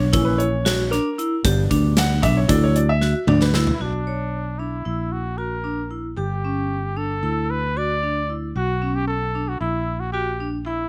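A breathy, up-front trumpet carries the melody with slapback echo from 3.7 s in this tense, brooding progressive instrumental, cut from a longer piece, in 9/8 and B minor at 228 BPM (eighths), over ringing hard-mallet vibraphone arpeggios with slow motor vibrato, a punchy fingered electric bass, and a short-sustain baby grand piano that features in the opening alongside gated 80s drums in a bright stone room, the drums closing that opening with a fill before both piano and drums stop at 3.8 s, the whole heard in a dry sound.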